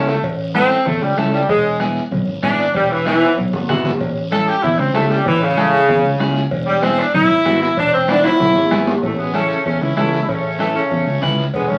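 A sunny, danceable cumbia fragment, cut from a longer piece and heard through the crackle of a very old 78 rpm record in a wet studio ambience. An up-front saxophone section carries the melody with a bright, tight jazz tone and light vibrato, playing solo lines over the first 9.0 seconds while drum fills break in twice along the way. Beneath it, a twangy electric guitar at the edge of break-up picks a scooped accompaniment, and a fretless electric bass holds down the low end with a direct, warm tone. The percussion sits in the background: raspy guiro, thick-skinned congas played with soft hands, ringing metal cowbell and timbales from a distance, and a very quiet bombo. At 9.0 seconds a dark, smooth-topped trombone enters very quietly with a scooped, vibrato-laden second line as the music moves into a new section.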